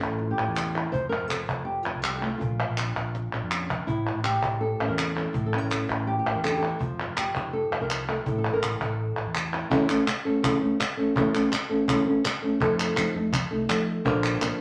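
A dark, thumb-plucked flamenco guitar with audible finger squeak leads this dramatic, passionate flamenco excerpt at 165 BPM in A phrygian dominant, backed by crisp, up-front palmas hand claps, a woody cajon with faint snares played with soft hands in the background that adds a fill at 3.1 s, and a round, amped fretless electric bass that drops out at 9.6 s and returns at 12.6 s, all set in a wet studio reverb.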